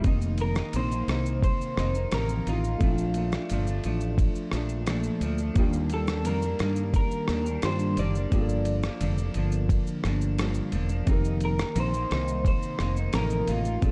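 This hazy, laid-back bedroom-pop excerpt opens with a gritty, compressed sampler-style drum kit of thumpy kick, ride cymbal, rim click and shaker, set up front beside a fretless electric bass thickened by ensemble chorus. Around them, a clean, picked electric guitar shimmers with lush chorus and warbly pitch drift, while a very quiet, woody, slightly detuned upright piano adds worn, boxy color with audible action noise. At 0.4 s a slightly broken-up electric guitar through a small old amp takes the melody with analog chorus and tape echo, over chords moving from F7sus4 through Bbmaj7, Ebmaj7 and Gm7 and back, all in a dry, dark, warm production.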